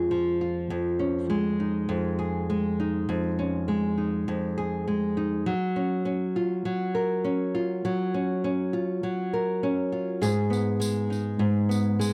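Acoustic pop at 101 BPM in 4/4, tender and wistful, built on a fingerpicked nylon-string guitar accompaniment that sits small and up front, moving through Fm, Dbadd9/F and Gbmaj7 before shifting to Abm at 10.2 seconds. A jingly tambourine with a small-room sound joins at that point for the closing bars. The dry, close 1970s-style studio sound carries light reverb and studio ambience in this short excerpt cut from a longer piece.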